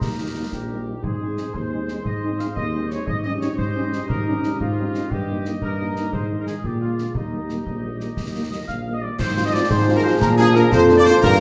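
Heard from further back in a roomy, reverberant studio, this rousing, spirited wind-band march in 6/8 opens with a distant trumpet section carrying the melody over a woodwind section's second line, a warm tuba bass up front, close and dry snare drum, bass drum and dark-edged clash cymbals, and a dark French horn section in the background. A very quiet, hollow wooden piccolo adds a mellow upper line from 8.5 s, and from 9.2 s a vintage-toned trombone section holds tight sustained chords while a smooth euphonium adds its own line from 9.7 s. The cut ends as the fuller band moves into the next phrase.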